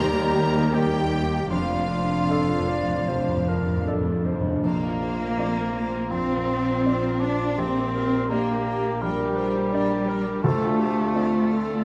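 Hopeful and moving, this rubato cinematic film score cue, cut from a longer piece, sets a clear, smooth violin section melody over a dark cor anglais, a soft flute that drops out at 3.8 s, a distant, lush second violin line and a mellow clarinet that joins at 2.3 s. A felt-muted upright piano, a focused viola section, a roomy French horn section holding chords and a ringing fingerpicked harp fill the accompaniment, while a cello section with portamento and a double bass section anchor the bass. Round soft-mallet timpani add a fill from 1.5 s, all sitting in a wet scoring-stage reverb.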